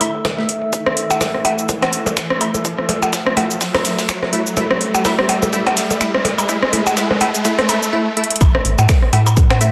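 A hypnotic, quirky minimal techno excerpt opens with crisp, detuned wavetable chord stabs under a filter sweep and delay, a rubbery square bass pumping in the background, a warbling lo-fi pad with chorus, a riser, delayed electronic blips and rim click, a gritty breakbeat-style hi-hat and snare, and a house kit of finger snaps, metallic hats and shaker, with a punchy, up-front electronic kick joining at 0.2 seconds as the build-up runs to a drum fill at 8.2 seconds and a drop at 8.4 seconds, set in light digital ambience.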